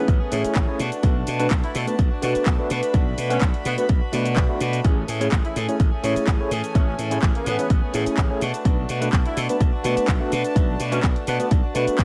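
Joyful and funky, this filtered disco house cut at 126 BPM rides a punchy, overdriven electronic kick up front and an overdriven house kit of cabasa, handclaps and hi-hat, with a growly slap bass entering at 0.1 seconds, a gritty tine electric piano through a combo amp and phaser, a clean, picked guitar riff recorded direct, floating bowed strings in the background, and a bright jazz-style horn section with light vibrato and dub echo carrying the melody until 11.5 seconds, every part save the kick pumping to the sidechain over Amaj7 and Bm7 in light reverb.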